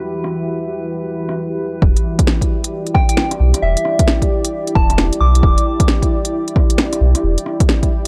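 Nocturnal and rainy, this future garage excerpt moves at 133 BPM in E minor with a swung sixteenth-note feel, cut from a longer piece. A deep, moody pad of detuned sawtooth chords opens the recording with chorus, built-in reverb and sidechain pumping, joined briefly by a drifting, glassy texture of calm sine overtones that ends at 1.8 s. An overdriven electronic drum kit with a woody snare and smooth, filtered hats sits up front almost from the start, and at 1.8 s a punchy, layered kick and a round sine sub bass arrive as the harmony shifts from Em to Em7. Between 2.9 s and 5.8 s a gentle, keys-like FM lead with bright vibrato and tape echo floats above in a high register. The whole has a dry, gritty hardware character with the feel of cassette tape.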